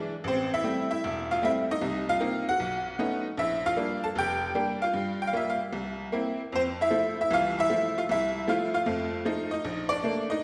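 A tack piano carries this short solo jazz passage on its own, its metallic, jangly tone sitting up front with a bright, percussive bite and brief sustain that gives it a vintage character. The mood is relaxed and warm, with a swung eighth-note feel in four. The part ranges from deep bass notes low on the keyboard up into the upper treble, moving through a jazzy progression of seventh and extended chords that settles on an F major seventh at 6.5 seconds before passing through F7 toward a B-flat major seventh. A generous, lingering reverb from a large hall or church surrounds the instrument, lending the dry, clangy attack a sense of space. Lifted from a longer piece, the passage ends at 10.4 seconds just after its opening section wraps up.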